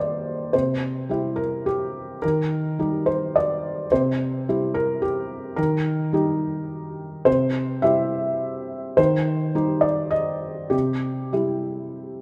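Tender and intimate, this short fragment of neoclassical minimalist piano unfolds in a lilting three-four metre with a freely breathing, rubato feel. A single felt-muted upright piano carries the whole passage alone from 0.0 to 12.2 seconds, its soft, mellow tone sitting up front in the mix. The audible action noise of the instrument lends a close, natural presence, as if the listener were seated beside the keys. The harmony rocks gently back and forth between two chords, E-flat and C, giving the music a patient, circling quality. Moderate concert hall reverb surrounds the piano with a lingering tail, softening its edges and opening up the space around it.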